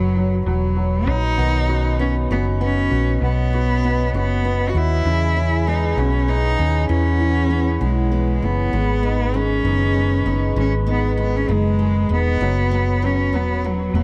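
In a straight 6/8 at 65 dotted-quarter beats per minute, this tender, romantic pop ballad in B major is cut from a longer piece. A round, punchy, hollow-body short-scale electric bass sits up front, fingered low and amped with a dark edge. Over it a single bowed cello carries the melody, rich and expressive with vibrato, a soft attack and portamento, its line trailing a tape echo. In the background a woody, vintage upright piano plays the accompaniment, a glass harmonica holds ethereal, band-limited sustained chords with a slow attack, and a picked parlour steel-string guitar with fresh strings enters at 1.4 seconds with quiet arpeggios. The harmony moves from F#sus4 through Badd9, E6 and G#m before returning to F#sus4 at 12.4 seconds, all within a small, intimate room and a dark, warm production.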